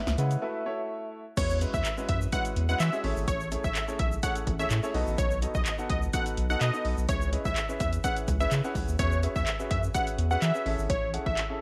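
Over a straight pulse, punchy analog drum machine kicks and snares sit up front with handclaps, hi-hat and a crash, the snare, clap and hats carrying a short room sound, while a grainy egg shaker ticks close and dry in the background. This carefree, upbeat dance-pop excerpt opens with a quick drum fill and a brief break, where a hollow, woody clarinet-like synth lead with chorus and tape echo plays a short phrase before it stops at 1.1 seconds. At 1.4 seconds the drop arrives, and a catchy, detuned unison lead takes the melody, its sawtooth edge pushed forward and breathing with sidechain pumping. Underneath, a round, deep analog bass with a filter sweep and a clear, vintage-toned grand piano both breathe with sidechain pumping, the piano accompanying the chords throughout. The harmony moves through bright, jazzy colours such as E69, Amaj7 and C#m7, all bathed in light digital ambience.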